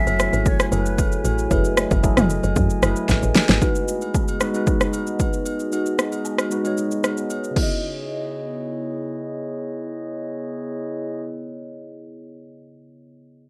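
A dry, rough home-demo sound frames this late-night, soulful amapiano passage cut from a longer piece, where a breathy jazz flute with vibrato and digital delay sings only through the opening 1.2 seconds, a worn, slightly out-of-tune tine electric piano plays mellow, overdriven, phaser-tinged accompaniment, a glassy, ethereal glass harmonica sustains chords under sidechain pumping, a woody, dark log drum bass punches through until 3.6 seconds, an up-front, overdriven deep house drum kit with a fat snare and punchy kick plays a fill and then drops its kick from 6.8 seconds, and agogo bells and woodblock sit in the background.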